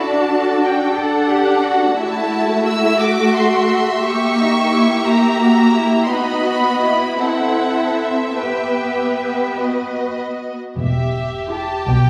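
This short cut from a longer piece sounds set back in a reverberant scoring stage, the strings heard from further back in the room with a long, wet tail around them. It is a slow, solemn and melancholic romantic movement for string orchestra in 6/8, played with rubato. The first violins carry the melody high in their range with a rich, lush, distant vibrato tone, while the second violins sing a smooth second line beneath them with lighter vibrato. The violas sit up front with an expressive, portamento-tinged accompaniment, and the cellos supply a smooth, even bass line. At 10.8 seconds the double basses join with a woody, up-front weight as the harmony, having passed through darker diminished colours, comes to rest on E minor.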